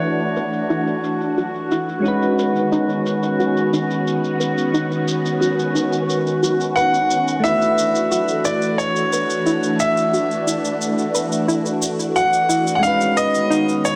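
This relaxed sunset chillout excerpt at 89 BPM in 4/4 opens with a bright, brilliant grand piano melody carrying tape echo over a bed of soft electric-piano-like synth keys, which bring chorus, delay and a touch of vintage 12-bit sampler grit. A silky string machine holds sustained chords up front with phaser and ensemble chorus, while a glassy texture of drifting overtones hangs on a single note, bathed in its own reverb. From 0.4 seconds a dark, round pluck plays arpeggios in the background with chorus and delay, and a filter sweep moves across its sound throughout. An electronic, layered shaker sits low in the mix, dulled by low-pass filtering. The piano drops out at 1.7 seconds and returns at 6.8 seconds as the harmony drifts between E9sus4 and C#9sus4, all set in a lush scoring-stage reverb with a digital ambience.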